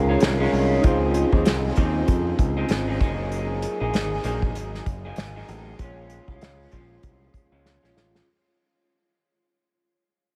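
A hazy, reverb-soaked mix with cassette-tape haze frames this mellow indie and bedroom pop fragment, cut from a longer piece and fading out across its full 8.3 seconds, with a gently swung feel over chords moving from Eb9sus4 through Dbmaj9 and Gb69 to Bbm7. Up front, a slightly broken-up, lo-fi electric guitar through a small old amp carries lush chorus and warbly pitch drift, while a dark, round picked bass sits beside it and an unplugged acoustic kit played with bundle sticks brings a tight kick, medium-tuned snare and hi-hat. Soft, full-bodied electric-piano-like synth keys with a filter sweep linger in the background until 3.0 seconds, and the drums close on a fill from 7.6 seconds.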